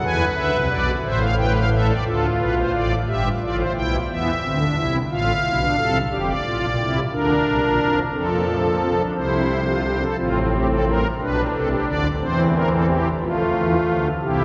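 A soft, shimmering pipe organ playing its string and celeste stops sits up front, carrying a serious yet driving baroque-style three-part fugue in 6/8 at 59 BPM, settling into F major from 6.1 s with romantic voicing and bathed in a long cathedral reverb, in this passage cut from a longer piece.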